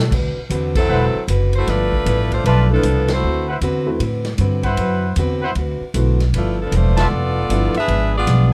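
An edgy, close-miked saxophone section carries the melody up front with vibrato in this energetic, joyful big band swing clip at 154 BPM, cut from a longer piece. The saxophones enter at 0.8 s, drop out, and return at 6.4 s. Beneath them, a woody pizzicato upright bass sits forward, while a distant, roomy drum kit swings on ride, hi-hat, crash, a medium-tuned snare and a boomy kick. A trumpet section with light vibrato and a smooth top adds stabs, and a picked, plugged-in parlour acoustic guitar fills out the accompaniment. A grand piano with long sustain joins at 2.7 s, and the band hits accents over chords moving between D13 and G13 before a closing G#dim7, all within a small room ambience.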